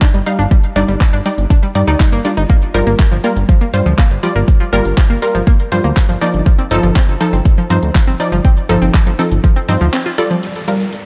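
A punchy, up-front electronic kick opens this bittersweet progressive house excerpt together with layered house handclaps and hi-hat, both carrying a tape-soaked, large-room character, while a round, bright analog pluck spins arpeggios through chorus, delay and sidechain pumping. A fat, detuned sawtooth bass sits up front with a filter sweep and sustained notes that pump against the kick, and a lush, wave-folded unison pluck cuts in with punchy stabs colored by cassette tape and delay. A grainy acoustic cabasa joins at 2.5 seconds, close and dry in the background. The harmony moves through emotional, minor-leaning seventh chords over a steady G bass. At 9.9 seconds the band hits an accent into a short break, and an electronic downlifter arrives at 10.4 seconds, all within a dark production lightly touched by digital reverb.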